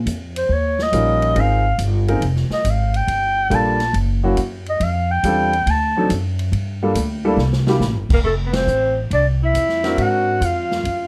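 A dark clarinet with vibrato, subtone and scooped notes leads this playful small-group swing and bop excerpt. It solos up front over woody pizzicato upright bass, warm grand piano accompaniment and a swinging drum kit with a punchy kick, medium-tuned snare, hi-hat, ride and crash. After a drum fill at 7.4 seconds, a clear, forceful tenor saxophone enters with a second line at 8.1 seconds, just before a band accent at 8.5 seconds, all set in a dark production with light reverb.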